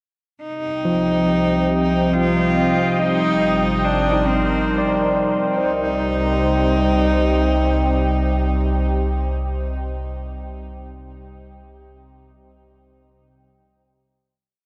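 Drenched in cathedral reverb and carried on worn, warbling cassette tape, this spacious, reflective ambient piece opens with a biting, nasal cello playing short call phrases through delay, joined by a barky, lightly overdriven tine electric piano whose two unequal loops drift against each other, a morphing, detuned wavetable pad under phaser, a deep, ominous rumbling drone holding the root, a tense string-like drone entering in the background at 2.5 seconds, and a very quiet glassy shimmer of drifting overtones that drops out at 5.6 seconds, before the parts settle onto a final chord and the electric piano rings on alone to 10.7 seconds.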